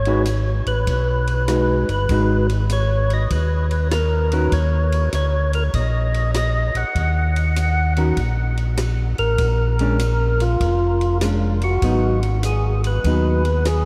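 Swung eighths in 4/4 carry this smoky, soulful soul jazz organ trio excerpt: a fat, lightly overdriven tonewheel organ with third-harmonic percussion and a slow rotary speaker sings the melody up front, while a mellow, round second tonewheel organ with chorus vibrato holds down the bass, a clean, picked hollow-body electric guitar supplies accompaniment over Abm7, Ebm7 and Bb7#9, and a dry, compact cocktail kit adds hi-hat, punchy kick, dark ride cymbal and rim click, with a huge ambient reverb setting the trio in a vast, echoing space.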